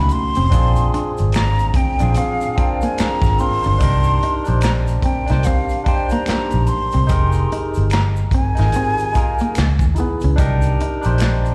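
Heard through a venue's PA with recital-hall reverb, this smooth, sultry neo-soul R&B excerpt sits at 73 BPM in C minor with a swung sixteenth feel, built on a round, foam-muted vintage electric bass up front and a crunchy breakbeat kit with a tight kick, gritty saturation and a rolled-off top, plus handclaps and hi-hat. A barky, lightly overdriven tine electric piano with phaser and slapback echo carries the lush ninth and eleventh chords, while a clean, twangy guitar line drifts in the background through spring reverb, and a quiet egg shaker and finger snaps add texture. Over it all, a breathy, hollow metal jazz flute with soft-attack vibrato sings the melody before dropping out at 9.9 seconds.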